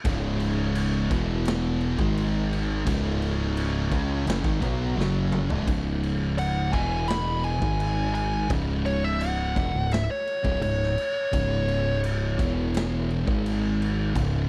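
A growling, overdriven electric bass sits up front in this ominous, hypnotic stretch of stoner and doom metal. It rides beneath a pair of thick fuzz guitars and a bright, double-tracked high-gain guitar that drops out at 5.7 seconds, while a gritty garage drum kit with a punchy kick, rolled-off top and pumping room sound rolls through a fill into the solo section. From 6.4 seconds a dark fuzz lead guitar treated with tape echo takes the melody over a dry mix.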